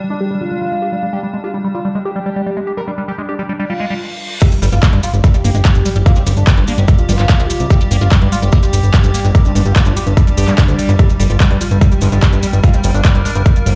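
Intense and driving, this psychedelic trance passage, cut from a longer piece, opens with a gritty, screaming overdriven synth lead carrying the melody over a bright, morphing wavetable pad of sustained chords, both pumping with sidechain while chorus, phaser and delay color the lead. Beneath them a squelchy, resonant liquid acid bass plays a riff under a filter sweep, its phaser, cassette-tape character and dub echo giving it a smooth, mellow edge. A reverse cymbal rises from 3.8 seconds into a brief stop, and at 4.4 seconds the drop lands with a punchy, overdriven electronic kick sitting up front, a big-room dance kit of crash, handclaps and metallic hats, and close, grainy maracas. A fat, detuned analog bass with tube saturation and a nasal bite joins just after, while a very quiet formant-sweep wobble bass adds a second line in two stretches and a zap flickers in near 11 seconds. The mix is dry and loud, sounding as if played on a big sound system in a bare room.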